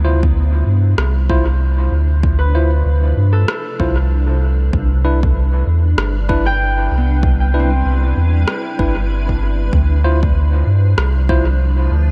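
Ambient dub at 96 BPM in D dorian, deep and hazy, with a swung sixteenth feel that moves from Dm7 to Cmaj9 and back across this 12.1-second section of a longer piece. A blurred, evolving granular cloud pad fades in with its own reverb and ensemble chorus, while a ringing, fingerpicked Celtic harp plays arpeggios through a low-pass filter and analog delay, and a clean tine electric piano sends stabs into dub echo. Underneath, a round, up-front sine sub bass holds the low end, a layered deep kick drum enters at 0.2 seconds, and a tape-warm rim click, re-recorded in a small room and fed into dub echo, joins at 1.0 seconds, all within a light digital ambience.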